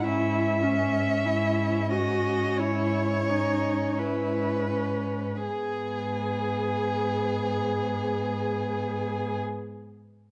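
Dark, warm studio sound with moderate large-room reverb frames this solemn, melancholic fragment of a slow romantic string quartet movement in G# minor, rubato at 39-49 BPM and slowing through its first 5.5 seconds as the harmony moves from C#m/G# to G#m, with a rich, focused first violin singing the melody up front with vibrato, a soft-attacked second violin and smooth-topped viola shaping expressive inner lines with portamento, and a distant yet forward cello playing a bowed G#2 bass.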